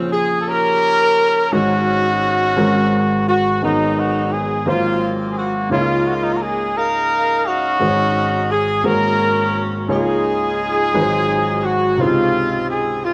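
A punchy solo trumpet with scooped notes and light vibrato shares the melody with a smooth-topped jazz saxophone section carrying tape echo, over a warm baby grand piano of short sustain, in this hopeful, reverent 13-second gospel passage in slow 6/8 at 57 BPM, moving from Bbm13 through suspended Ab chords to a closing Dbmaj9 inside a moderate echo chamber reverb.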